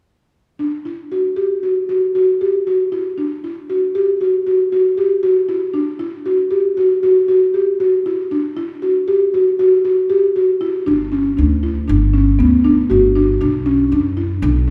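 A reverberant recital-hall ambience, the kind heard in a church or concert hall, surrounds this short contemporary chamber piece, which is cut from a longer work. It moves at 117 BPM in an uneven 5/4 with a straight feel, and the mood is restless yet pensive. A buzzing marimba played with soft mallets enters at 0.6 seconds, sitting up front with round, dark, woody arpeggios over a rootless Dadd9 harmony. At 10.9 seconds an upright bass joins with pizzicato steel-string notes as the harmony shifts to G5 and later Bm. The two parts carry on together until the fragment ends at 14.7 seconds.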